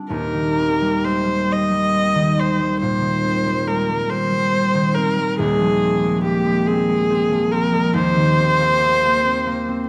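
A slow, rubato 12/8 pulse of 46 BPM in dotted quarters carries this luminous, dreamy impressionist duo in E-flat major, tuned to A4 = 439 Hz, cut from a longer piece. A fingerpicked concert harp rings out from the first moment with an acoustic accompaniment, and at 0.1 s a rich, bowed solo viola enters up front with vibrato, portamento and expressive phrasing over a gentle drift from Eb6 to Fm7/Eb and Cm7/Eb. The up-front pair sits in a wet recital hall with a layer of vinyl crackle.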